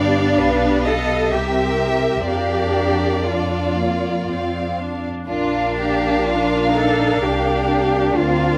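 Swaying in a rubato 3/4 at roughly 59 to 65 BPM, this slow romantic movement for string orchestra unfolds in Bb major with a tender, warm mood, cut from a longer piece. The first violins carry a focused melody high in their range, while the second violins shape a more expressive, close-sounding line beneath them. Violas supply smooth, even accompaniment that sits a little distant. Cellos hold a smooth bass part, and the double basses anchor the lowest register with a focused, close tone. Every section plays bowed with vibrato and a rich ensemble sound, all in a moderate recital hall reverb, as the harmony moves from G7 and C7 through Bb over F and F5 to settle on Bb by 5.3 seconds.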